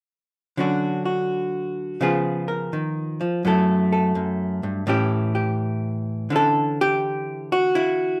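A lone archtop guitar opens at 0.6 seconds, its dark, clean electric hollow-body tone, miked and amplified, sitting up front. This is solo jazz in a playful, warm mood, with a swung eighth-note feel in four. The picked guitar moves through Dmaj7, C#7, F#m7 and A7, ranging from F#2 up to Bb4. At 6.3 seconds the harmony shifts to a Dmaj9 as a new section begins, carrying on until the guitar stops at 8.2 seconds. A moderate small-room reverb gives the sound a close, intimate space, and the passage is cut from a longer piece.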